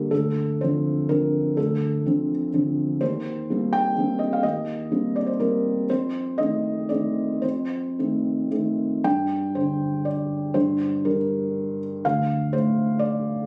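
Intimate and reflective, this short neoclassical minimalist piano piece is cut from a longer work and sits in G minor. A solo felt-muted upright piano plays throughout the 13.5 seconds, ranging from D2 to G5, its dark, mellow tone shaped by thick felt and placed up front in the sound. The music moves in 3/4 with a rubato feel, drifting between 109 and 127 BPM. The harmony passes from Dm7 through Cm7/Eb to F7 in the opening section, then settles on Gm at 9.0 seconds before returning to Dm7. Recorded on a phone in the room, it carries little reverb, giving it a close, private character.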